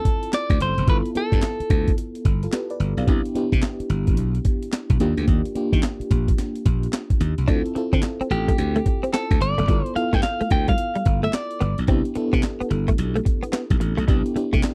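Slick and confident, this new jack swing R&B excerpt struts at 109 BPM with a swung sixteenth feel, as a gritty, compressed breakbeat kit with a thumpy kick, high-tuned snare, handclaps and hi-hat drives a growly, punchy slap bass and a dark, full-bodied FM electric piano with tremolo through Dm7, G13, Cmaj7 and Ebmaj9, while a clean picked electric guitar melody with slapback echo appears at 0.0 and 8.3 seconds and a scooped, direct-recorded guitar riff with ensemble chorus joins at 7.5 seconds, all captured in a dry, close 1970s-style studio sound.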